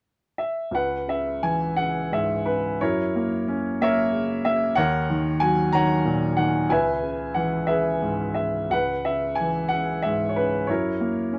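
A clear, woody upright piano plays alone from 0.4 to 11.4 seconds in this melancholic classical fragment, its open tone and long sustain placed up front in a small room with moderate reverb and a dark overall production. The lyrical solo moves in a rubato 6/8 at about 56-63 BPM in dotted quarters, set in C# dorian and spanning C#2 to A#5. Its harmony drifts from C#m7 through F#7 and D#m7 back to C#m7 before closing on F#7, the excerpt having been cut from a longer piece.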